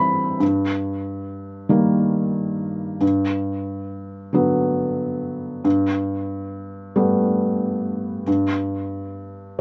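A folk piece for solo felt-muted upright piano, nostalgic and tender in a slow, straight 6/8. The piano sits up front with a soft, mellow, intimate tone, its action noise audible, spanning G2 to B5 under a light reverb. The harmony drifts from Eb/G at 0.4 seconds through Bm/G to Gadd9 before the chords fall away at 8.3 seconds, the piano playing on to the end of the excerpt.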